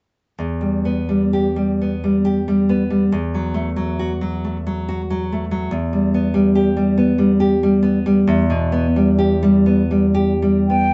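A nylon-string guitar opens at 0.4 s, fingerpicked and close to the listener, its fresh strings giving a deep classical tone with an audible finger squeak. This is an elegiac, melancholic fragment of a romantic duo in 6/8, with a free rubato feel that lets each phrase breathe. The guitar moves from a minor chord to a suspended, open-sounding harmony at 3.1 s before settling back at 5.7 s, ranging from low bass notes up into its middle register. Only at 10.7 s does the concert flute appear, placed up front with an airy, soft-attacked high note touched with vibrato, just as the music is cut off. The two players share one room with a lush but short studio reverb, and the top end is gently rounded, lending the recording an intimate, mellow character.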